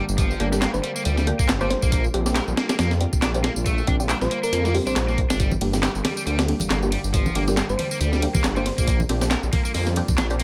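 Opening on a very quiet swirling phased pad and a bright, overdriven cranked stack guitar riff with delay, this swaggering, energetic G minor breakbeat excerpt at 138 BPM with a swung 16th feel quickly adds a thick, menacing detuned saw bass up front, a gritty, pitched-up sampler-style break with a thumpy kick alongside an overdriven house kit of handclaps, ride and tambourine, dark muted dub chord stabs through phaser and delay, and a round, tine-like thumb-piano-style pluck with telephone-filtered 12-bit grit, while hard-handed congas join in the background at 5.5 seconds over a Gm to Bb6 progression in digital ambience.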